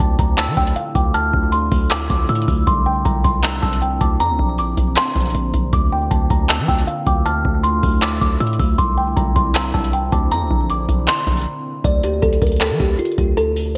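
Hard-hitting, eerie half-time trap cut from a longer piece, where a woody, hollow kalimba melody through a low-pass filter and a crystalline FM synth bell with chorus, phaser and digital delay float over a moody, detuned ambient pad, all riding a heavy, distorted 808-style bass and an up-front booming analog drum machine with metallic hats, handclaps and gated reverb; after a brief break at 11.5 seconds, the bell and pad drop out at 11.8 seconds, leaving kalimba, bass and drums in a lush hall with bright 1980s-style digital polish.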